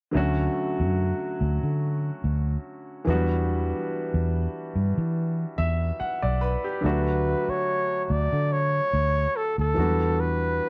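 A dry, close 1970s-style studio sound with light reverb frames this smooth, lush soul excerpt at 72 BPM in D major, with a gentle swing on the sixteenths. A clear baby grand piano carries the accompaniment from the start, intimate and natural with long sustain and audible action noise, moving between Dmaj7 and Em9 chords. Beneath it, a vintage muted fingered electric bass sits up front, dark, round and foam-muted, its amped tone thickened by tube saturation. The piano plays a fill from 5.2 to 6.8 seconds, leading into the second section, where a clear flugelhorn enters at 6.9 seconds with a punchy, pop-style solo melody. Its vibrato and slapback echo give the melody presence as the harmony returns to Dmaj7 and Em9 before the cut.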